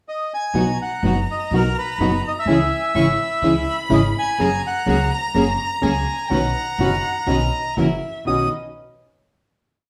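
Passionate and nostalgic, this short rubato tango opens with a reedy, up-front bandoneon carrying a motif-based melody from 0.1 s, soon joined by thumb-plucked classical nylon-string guitar in short chords with audible finger squeak, a woody pizzicato upright bass and a background string section marking a bright, intense marcato in four, while a single close violin sings an expressive counter-melody with vibrato and portamento, the band playing live together in one room, bathed in a large, wet studio reverb, before settling on a final chord at 8.3 s.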